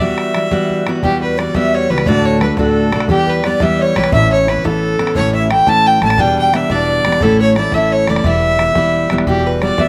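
A clear, earthy fiddle carries the melody over a mellow, hollow wooden flute's airy second line, both touched by slapback echo, while a full-bodied fingerpicked steel-string guitar accompanies up front, a boomy, saturated bodhran joins at 0.2 seconds and a woody pizzicato upright bass enters at 1.0 seconds, giving this dark yet spirited Celtic jig in E dorian at 116 BPM in 6/8 a dry, open-air sound in a passage cut from a longer piece.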